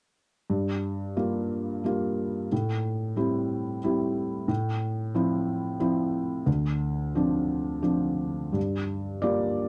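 A felt-muted upright piano plays alone from 0.5 to 9.7 seconds in this brief, wistful neoclassical minimalist fragment cut from a longer piece, moving in a rubato 3/4 at 90 BPM through Gm7, Am7, Fmaj7/A and Dm7 before returning to Gm7 at 8.6 seconds, its soft, mellow tone sitting up front with audible action noise in a dry, close, vintage-style booth.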